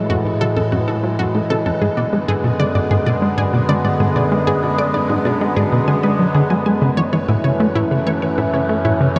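Ambient, sequencer-driven space music at 96 BPM in a hypnotic, cosmic mood, this fragment of a longer piece sets a bright, evolving resonant pad with chorus and phaser holding sustained chords up front over a punchy, funky analog bass riff and lush, detuned unison pluck arpeggios, both carrying tape echo, while a breathy, wind-like tuned noise texture sits dark in the background and a huge, wet reverb with a 7.5-second tail surrounds the sound as the harmony moves from F#madd9 to G#dim/F# at 1.8 s and A/F# at 6.8 s.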